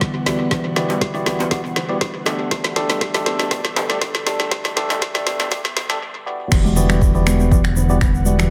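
Spiritual and earthy, this afro house excerpt moves at 120 BPM in E minor, cut from a longer piece. An ethereal, detuned pad holds very quiet sustained chords from Em9 to Gsus2/E, while a woody, hollow kalimba plays pumping arpeggios through a low-pass filter and analog delay, its filter swept across a build-up lasting until 6.5 seconds. A round, dark analog bass pumps underneath, joined by a deep, overdriven electronic kick and an up-front afro-pop kit of crash, finger snaps and woody snare playing a drum fill, and a clean tine electric piano adds delayed stabs from 0.3 seconds. A soft-handed djembe with metal rattles sits very quietly until 5.9 seconds, and after a short break the drop arrives at 6.5 seconds with a grainy, bright egg shaker and vintage, band-limited congas in the background. The mix is echo-heavy, with spring and small room reverb.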